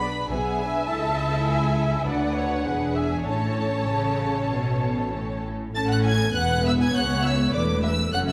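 The violins lead this cheerful, graceful string-orchestra passage, their melody sitting high with a smooth top and vibrato, while a second violin line moves beneath it with a lush, even tone. It is a quick classical-period movement cut from a longer piece, played with an uneven, rubato pulse that gives the phrasing a breathing quality. The violas fill in the accompaniment close and expressive, with soft attacks and touches of portamento. Underneath, the cellos supply a rich, bowed bass, joined by a double bass section that sounds dark, woody and distant. The whole ensemble plays from the opening to 8.3 seconds within the reverb of a scoring stage, and the harmony moves through a brief cadence that settles on A at 3.3 seconds before a new section begins at 5.8 seconds.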